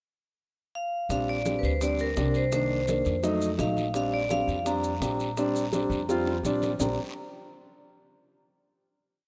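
A straight 4/4 groove at 169 BPM drives this short, complete Afro-Cuban jazz piece in Bb major, sunny and sophisticated in mood, tuned slightly below standard pitch. A vibraphone with medium hard mallets opens with a pickup at 0.8 seconds, its bright, ringing tone carrying a motif-based melody of call phrases with a slow motor vibrato. From 1.1 seconds a dark, mellow baby grand piano sits up front with syncopated rootless chord stabs and long sustain, while a woody, thumpy pizzicato upright bass on gut strings plays a tumbao line that anticipates the chords through Bb6, Cm7 and F7b9. The percussion stays very quiet underneath: tight, high-tuned bongos in steady eighths with a hand bell, damped thick-skinned congas with slaps and open strokes, a raspy guiro and grainy maracas. A drum fill at 6.1 seconds leads into a final chord, and the whole rough home demo mix is bathed in a lush hall reverb.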